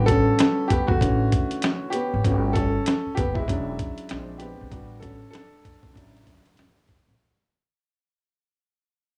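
Jazz-hop at 97 BPM in D major with a relaxed, easy swing, this brief excerpt cut from a longer piece fades out across its whole length while a clear, boxy baby grand piano takes a solo up front, its long sustain bathed in plate reverb over rich chords moving from A13sus4 through Gmaj9#11, E13 and Bb9 back to Dmaj9/A. Beneath it, a pizzicato upright bass sounds woody and growly, and a gritty, compressed sampler-style soul kit sits forward with a thumpy kick, fat snare and hi-hat carrying a tape-warm character. Light reverb gives the whole a small-room ambience.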